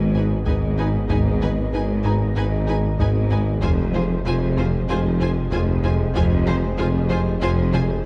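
A dark, bowed double bass section, doubled by a mellow tuba, a warm cello section and a thick, detuned saw bass with chorus, anchors this brooding, vast stretch of hybrid orchestral and electronic film score, moving from G#m to Fm at 3.6 seconds at a straight 95 BPM in 4/4. Above that low foundation, a rubbery square-wave bass riff bounces quietly while a round, tine-like synth pluck with a thumb-piano character spins gentle arpeggios through chorus and phaser. A hollow, flute-like pad and a mellow French horn section hold soft sustained chords, and a very quiet, dark concert grand piano adds high texture. The distant symphonic violins sustain a single lush melody note, with a studio violin section gliding expressively on a second line and a smooth viola section filling the middle in the background. A very quiet, close and dry taiko ensemble played with hard sticks enters at 0.5 seconds and closes the passage with a drum fill from 7.7 seconds, all set in a moderate scoring-stage reverb with a dark, warm production.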